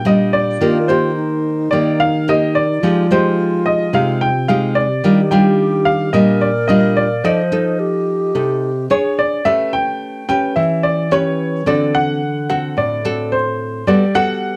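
A baby grand piano carries the melody up front in this relaxed, breezy bossa nova, its intimate, natural tone showing a short sustain and audible action noise in the high register. Beneath it, a fingerpicked nylon-string guitar with old strings supplies a woody, classical accompaniment that spans from low bass notes up into the treble and sits slightly louder than the piano. An alto flute enters at 0.6 seconds with an airy, hollow second line, its straight tone and crisp attack staying soft and mellow until it drops out at 9.4 seconds. The harmony moves through lush ninth chords in the opening stretch, then shifts at 9.5 seconds into a new passage that settles on a Gmaj9 near the close of this cut from a longer piece. Close, detailed microphones and light reverb give the trio a warm, present sound.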